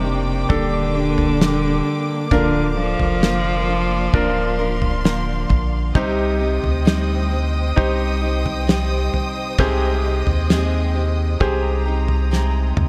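A longing, heartbroken pop ballad at 66 BPM opens with an intimate, airy-bowed solo cello melody up front over clear concert grand piano, lush bowed studio strings, bright fingerpicked nylon-string guitar with tape echo in the background, and a deep, round sub bass; a dry 70s drum kit with a fat snare enters at 0.5 s, the cello falls away at 5.5 s, and the kit closes on a fill at 12.3 s, all in a small, lightly reverberant room.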